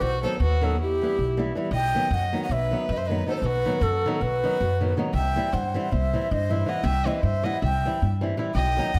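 Balkan wedding-band folk in a straight 9/8, this short, virtuosic and bittersweet excerpt is led by a breathy, end-blown ney with expressive vibrato, joined by a close, nasal gut-string violin playing a second line beneath it. Pizzicato upright bass sits up front with a woody, thumpy tone, while a dark, fingerpicked flamenco guitar enters at 0.2 s to fill out the accompaniment. The harmony moves between B and E minor before settling onto C at 5.1 s, all set in a moderate recital-hall reverb.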